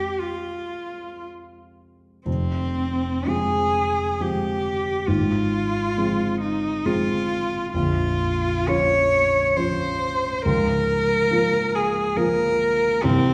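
Romantic classical duo in F minor, melancholic and yearning, moving in a slow, rubato 3/4 at 57-70 BPM, cut from a longer piece. A rich, smooth cello with vibrato carries the melody up front, while a dark, mellow baby grand piano accompanies low in its range, its intimate sound revealing audible action noise and short sustain. The harmony shifts from Fm to Fm/Ab at 5.1 seconds, then to Bbm and Bbm/Db, all heard from further back in a wet recital hall.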